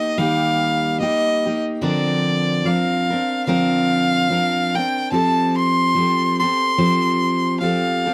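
Reflective and wistful, this short acoustic folk excerpt moves at a relaxed 72 BPM in 4/4 with a gentle swing, a bowed fiddle with light vibrato carrying a smooth, even melody over a picked steel-string guitar. The fiddle sits up front with a warm, smooth top, while the full-bodied jumbo guitar shows finger squeak as it moves from Eb through Bbadd9/D to Fadd9. Close, detailed microphones and light reverb keep both players intimate and present.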